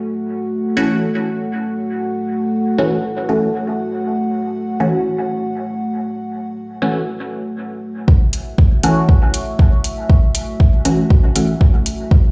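Deep and hazy, this dub techno fragment opens on a dark, detuned analog pad holding a sustained F#m7 chord with chorus and sidechain pumping. At 0.8 seconds, muted, nasal chord stabs with a resonant filter pluck, phaser and dub echo join up front, before a tape-warm deep kick arrives at 8.1 seconds with metallic hi-hats following just after, all set in a big, bare-room reverb.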